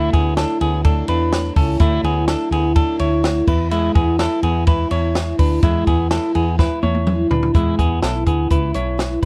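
A straight 4/4 pulse at 125 BPM drives this nostalgic, bright jangly indie pop excerpt, where a shimmering, octave-doubled picked twelve-string acoustic guitar plays accompaniment over Dadd9 then E, a clean semi-hollow electric guitar plays fingered arpeggios with slapback echo, a growly woody fretless bass sits up front, and a compact cocktail drum kit with dark cymbals, a high-tuned snare and a tight kick enters at 0.1 seconds, playing a fill from 6.6 to 7.5 seconds before a new section, all captured in a dry, close 1970s-style studio sound.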